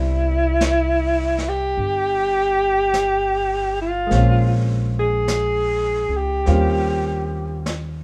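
A breathy alto saxophone leads this romantic, late-night jazz ballad at a slow 51 BPM with a gentle swing, singing a mellow, roomy melody with vibrato and scooped notes over a short-sustained baby grand piano, a woody pizzicato upright bass and, from 0.6 seconds, a vintage brush kit with a rolled-off top, all drifting through Cmaj7, Bbm7 and Eb13 in light reverb in this passage cut from a longer piece.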